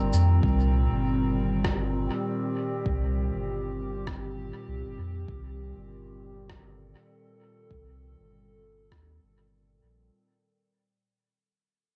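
The opening moment brings a warbling, detuned pad of sustained chords alongside a round sine sub bass and a brief, barely audible trace of felt-muted upright piano arpeggios that is gone by 0.5 seconds. This short ambient dub excerpt sits at 99 BPM in 4/4 with a swung sixteenth feel, resting on a single Cm7 chord in C dorian, and its mood is deep and spacious. The pad, up front with chorus, phaser, built-in reverb and cassette tape coloring, has a nostalgic, lo-fi character with a slow attack and long release, while the sub bass stays up front with a fast attack and sustained notes. Sampler-style cabasa and rim click enter at 0.1 seconds, muffled and compressed and touched by dub echo, followed at 0.4 seconds by a layered electronic kick that sits in the background. The home cassette recording is dry overall, and the whole passage fades out across its length, with the drums stopping at 9.1 seconds.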